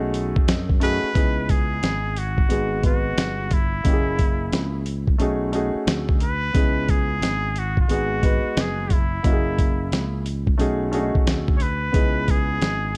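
A gritty, sampler-style drum kit with a thumpy kick and fat snare sits up front in this smoky jazz-hop excerpt, swinging at 89 BPM in C# minor. A dark concert grand piano plays mellow chords with deep bass, while a growly, punchy fretless electric bass holds the low end through a cycle of B13, C#m7, G#m7 and F#13. A nasal, breathy trumpet with a straight mute enters at 0.8 seconds and carries the jazz-style melody with vibrato, all within a dark, warm studio ambience.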